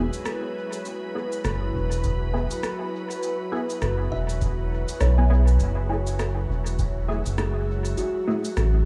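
Ambient dub at 101 BPM in 4/4, with a gentle swing on the sixteenths and a spacious, hazy mood, in this short cut from a longer piece. A soft, organ-like pad holds calm, detuned sustained chords, bathed in ensemble chorus and its own reverb, while a woody, hollow kalimba plays mellow arpeggios in the background through a low-pass filter and dub echo. A muted, filtered chord stab with a quick pluck adds phaser, chorus and dub echo, and both the stab and the kalimba carry a filter sweep throughout. Up front, a round, dark analog bass with tube saturation anchors the low end as the harmony moves from E to F#m7 at 5.6 seconds. Electronic cabasa and rim click tick lightly with dub echo, and a dry, tape-toned electronic kick sits in the background from 2.0 to 6.9 seconds, all within a light studio reverb.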